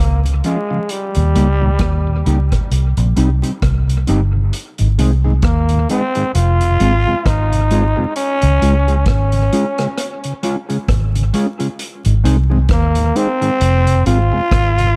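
Vinyl crackle and a small-room ambience frame this serious, laid-back roots reggae passage, cut from a longer piece and carried by a lazy sixteenth-note swing. Up front, a growling trombone takes the solo melody, raspy and gritty with a brilliant edge and vibrato, its phrases trailing off into dub echo. Beneath it, a foam-muted, fingered electric bass sits just as forward, round, punchy and dark through its amp. A vintage drum kit joins at 0.3 seconds with hi-hat, rim clicks and a punchy kick, its top end rolled off for a smooth, studio-room tone. Further back, a flute-like tonewheel organ adds soft chords with audible key click, tube saturation and a slow rotary speaker. A clean, fingered electric guitar enters at 0.4 seconds with subtle chorus and dub echo, and the progression moves through Db, Eb and Cm before turning to Ab, Fm and Db, then back to Ab and Fm.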